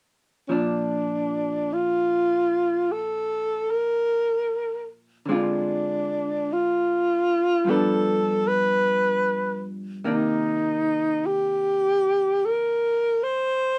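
Lightly reverberant and intimate, this late-night jazz ballad excerpt sets a breathy, close-miked alto saxophone up front on a swung melody with vibrato and a hushed subtone, accompanied by a clean, picked vintage hollow-body electric guitar with a warm tone.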